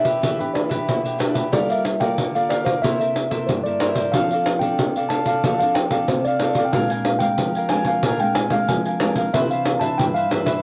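Samba and choro at 92 BPM in a straight 4/4, this playful, sunny excerpt from a longer piece sits in C major and carries the soft blur of a home cassette recording with light reverb. A mellow, clean tine electric piano carries the melody between C5 and A5, its direct tone standing just ahead of the strings. Beneath it, a crisp, picked cavaquinho and a small, thumb-plucked nylon-string guitar share the accompaniment, both carrying the same tape coloring as the keys. Up front, a jingly pandeiro played with soft hands adds a vintage, band-limited shimmer to the rhythm. The harmony moves from Em7 through Gm9, C6, F6 and Bb9 before settling on Cmaj9 at 9.3 seconds. All four parts play together from the start, with the electric piano dropping out at about 10.3 seconds and the others continuing until about 10.6 seconds.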